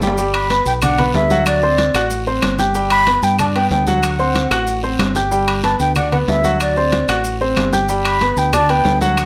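A drum fill opens this festive, sunny salsa excerpt in G major at 187 BPM, as an up-front, clear grand piano with audible action noise and a dark, round, punchy fingered electric bass start together over background congas, raspy guiro and grainy maracas, with ringing metal-shell timbales joining at 0.1 seconds. At 0.3 seconds a breathy, mellow concert flute takes the melody with expressive vibrato, a crisp attack and plate reverb, as woody claves enter in the background. The harmony alternates between G and D7 in a moderate studio room.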